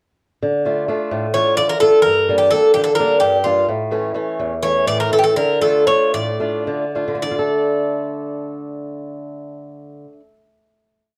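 A fingerpicked acoustic guitar opens this brief, brooding Greek folk piece at 0.4 seconds, playing boxy, swing-style bass notes and oompah chord figures in a straight 7/8 metre. The bouzouki enters at 1.3 seconds with a bright, metallic modal melody full of ornaments, its picked double strings partly doubled at the octave and set in plate reverb. Both instruments sit up front, with the bouzouki carrying the line above the guitar's accompaniment. In D harmonic minor, tuned to A4 = 436 Hz, the harmony moves from D minor through G minor and A back to D minor. The pulse runs at 206 to 258 eighth notes per minute and slows from 3.7 seconds until a bare D5 chord arrives at 7.2 seconds and rings to the close. The dark, warm production places the band in a short, wet studio ambience.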